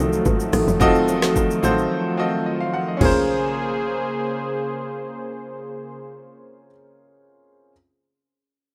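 Hypnotic and late-night, this 109 BPM amapiano excerpt in Bb minor sets a brilliant, up-front grand piano and a detuned sawtooth analog pad with chorus over a punchy, tight log drum bass, joined by delayed marimba stabs from medium mallets, an electronic R&B kit with knocking kick, woody snare and metallic hats that stops at 3.1 seconds, and very quiet, saturated bongos and congas, as a break arrives at 1.9 seconds and the harmony shifts from F7b9 to Bbm9 at 3.0 seconds in a rough home-demo mix with moderate studio reverb.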